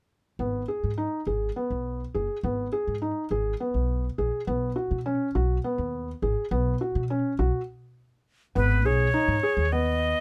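Contemporary instrumental in an urgent, pensive 7/8, where a soft, felt-muted upright piano's arpeggios and a woody, thumpy pizzicato upright bass move from G# minor through B5, halt together for a stop at 7.7 seconds, and return at 8.6 seconds as a breathy, bright jazz flute with vibrato takes the melody, all captured close and dry.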